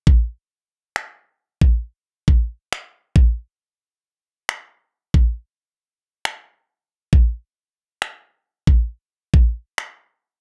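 R&B excerpt at 68 BPM in a straight 4/4, smooth and dreamy, built on an electronic trap drum kit of finger snaps and a knocking kick, the kit sitting up front from 0.1 to 10.0 seconds in a dark, dry production.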